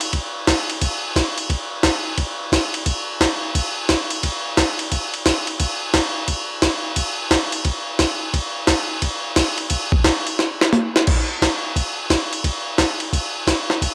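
A wet spring reverb surrounds this cheerful, playful country groove at 175 BPM in 4/4, swung on the eighths. A jungle sampler-style drum kit sits up front the whole way, its gritty, pitched-up, compressed sound giving a thumpy kick and a medium-tuned snare alongside hi-hat, ride, crash and toms. A drum fill from 10.4 to 11.1 seconds leads into a repeat of the opening section before the cut at 13.9 seconds.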